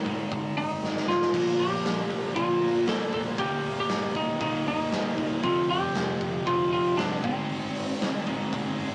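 An anthemic, energetic hard rock passage, cut from a longer piece, opens with a twangy, slightly broken-up lead guitar carrying the melody up front, over a crunchy, double-tracked overdriven guitar riff. A big acoustic rock kit joins almost at once, with a punchy kick, medium-tuned snare, hi-hat and glittering crash cymbals in an airy, polished room sound, while a growly, amped picked bass sits in the background. A drum fill from 0.8 to 1.3 seconds leads into the entry of a tight, distorted, double-tracked guitar riff that adds sharp edges behind the main parts. The harmony moves from Ab5 through Bb, Eb and F before returning to Ab, all in a straight 4/4 feel. The whole take has the rough character of a rehearsal-room recording, with saturated warmth, a small-speaker quality and a moderate studio reverb.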